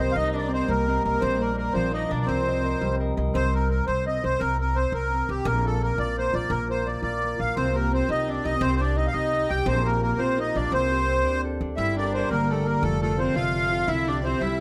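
Celtic folk jig in C minor at 114 BPM in 6/8, dark, lively and wild, cut from a longer piece. A reedy, sweet accordion with light tremolo tuning carries the melody up front, over ringing fingerpicked concert harp and a woody, thumpy pizzicato upright bass, while a smooth bowed viola with vibrato adds a second line, falling silent at 3.0 seconds and returning at 7.6. Close, detailed microphones and light reverb shape the sound as the tune moves into a new section at 11.8 seconds.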